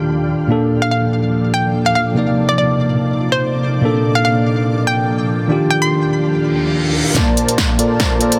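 Future bass with a lush, euphoric mood and a half-time, lightly swung feel, this short excerpt opens on a bright, clean tine electric piano and a shimmering, ethereal ambient pad under a filter sweep, both pumping against the sidechain, while a hollow, bouncy square-wave pluck carries the melody from 0.8 seconds through chorus and digital delay. A reverse cymbal and riser arrive at 6.5 seconds to lead into a build-up. At 7.2 seconds a detuned supersaw stab riff, crisp hats and a punchy snare fill, and a layered electronic kick enter over the dense, heavily limited mix.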